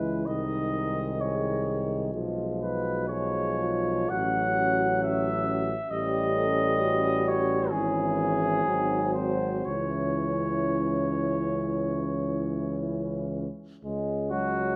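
Classical, hymn-like brass band music in C# minor, melancholic and elegiac, moving slowly at 56-68 BPM in a rubato 4/4, with a warm, distant flugelhorn singing the melody up front over a mellow French horn section's second line, clear euphonium and punchy trombone accompaniment touched with light vibrato, and a clear tuba bass, all set in a moderate scoring-stage reverb as the harmony moves through C#7/B, F#m/A and G#7 to settle on C# minor at 9.7 seconds, a short cut from a longer piece.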